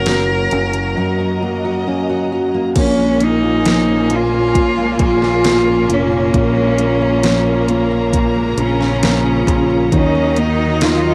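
A steady, straight four-beat pulse drives this slow, emotional pop ballad, with a produced electronic drum kit of knocking kick, deep snare, hi-hat and crash, overdriven and given a cassette-tape grit as if re-recorded in a small room. A break arrives at 1.0 seconds. When the harmony moves from Gb to Bbm7 at 2.8 seconds, a bright, intense cello section joins in the background with a second line. Up front, a single distant, rich bowed cello carries the longing melody with smooth, even vibrato and its own tape colouring. Beneath it, a dark, mellow grand piano with long sustain provides accompaniment and a full-bodied, fingerpicked dreadnought acoustic guitar plays arpeggios, both in the background, while a lush string section holds sustained chords with expressive portamento and a warm, smooth top. A growly, punchy fingered electric bass anchors the low end in this dry, intimate home cassette recording, which settles on Ebm near the close of this fragment of a longer piece.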